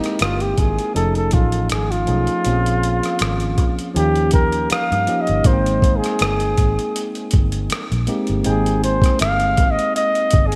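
R&B and neo-soul with a sensual, warm mood, this short clip from a longer piece puts a breathy flugelhorn solo up front, its mellow, whispered tone carrying vibrato and a soft attack over clean tine electric piano accompaniment. A gritty, compressed boom bap sampler-style kit with a thumpy kick, hi-hat and rim click sits in gated reverb, while a dark, round, foam-muted fingered electric bass enters at 0.2 seconds beneath a lightly swung groove. The bright 1980s-style digital production is bathed in a lush hall reverb, and the harmony moves through rich jazz-inflected chords.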